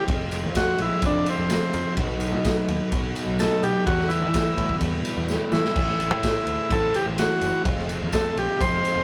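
A buzzy, vintage transistor combo organ sits up front and takes a solo for the whole 9-second excerpt, its clean tone bathed in spring reverb. This trippy, dark psychedelic rock passage moves at 127 BPM in a straight 4/4, cycling through Fm, B, Em and Am before returning to Fm. Beneath the solo, a bright, double-tracked semi-hollow guitar plays an overdriven, picked riff through a rotary speaker. A very quiet, reedy tonewheel organ holds sustained chords with key click and its own slow rotary speaker, while a direct, warm picked electric bass anchors the low end. The gritty, saturated garage drum kit sounds up front in a small, pumping room, with a boomy kick, dark cymbals and a rolled-off top, and it plays a fill at 5.3 seconds, with a jingly tambourine tucked into the background. The whole cut has the rough, tube-saturated character of a rehearsal-room recording with light reverb.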